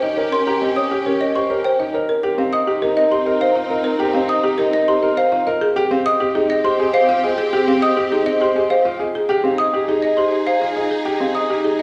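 Heard from further back in a large, reverberant studio, this 11.8-second excerpt of minimalist classical pattern music moves at 102 BPM in 3/4 with a propulsive, hypnotic pull. A rustic, boxy folk marimba carries the melody up front, while a clear, short-sustained baby grand piano and a mellow xylophone played with soft rubber mallets spin arpeggios. A lush bowed string section holds sustained chords with vibrato, moving from Eb7 to Cm7 at 2.1 seconds and Abmaj7 at 5.6 seconds.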